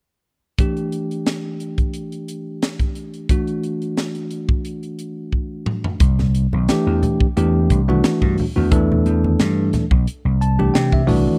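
A punchy vintage slap bass takes the spotlight in this soaring, funky slice of electric jazz fusion, arriving up front at 6.0 seconds with an amped, warm electric tone. Before that, a bell-like tine electric piano carries the accompaniment, its bright, clean, direct sound sitting close to the listener, while a crisp fusion drum kit drives a straight 4/4 groove with an airy, polished studio-room character, a high-tuned snare and a punchy kick. A drum fill ushers in the second section, where the bass joins and low-tuned congas with a thin-skinned, close sound add color from the background. The electric piano closes the passage with a fill of its own starting at 10.1 seconds. The whole piece has the dry, intimate feel of a 1970s-style studio session in a small room, and it is cut from a longer piece.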